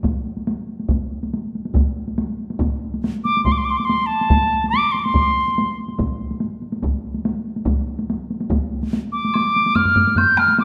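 The recording sits in a wet recital hall whose 1.5-second reverb rings around a powerful, driving Japanese traditional taiko drum ensemble, cut from a longer piece and moving at 142 BPM in a straight 4/4. A solo taiko played with hard sticks runs throughout, its tone vintage and band-limited, sitting up front beside a close, dry taiko ensemble struck with heavy sticks that drops out at 8.6 seconds. A wooden piccolo carries the melody between A5 and G6, entering at 3.2 seconds with a pure, straight tone, a crisp attack and an expressive, close-miked presence, then returning near the end. In the closing section a woody woodblock ticks in the background, set in a small room. At 9.8 seconds a second solo taiko with heavy sticks adds a compressed, saturated punch.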